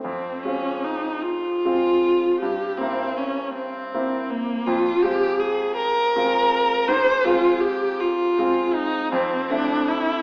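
A single bowed viola sings a solemn, elegiac melody from the first moment, its tone warm and close with vibrato, soft attacks and expressive portamento, while a bright, brilliant baby grand piano accompanies from below, both up front. This romantic classical duo moves in a rubato 6/8, with the harmony turning from minor toward a major seventh chord at 9.1 seconds. A wet recital-hall reverb places the pair further back in the room with a small-speaker quality, and the passage is cut from a longer piece.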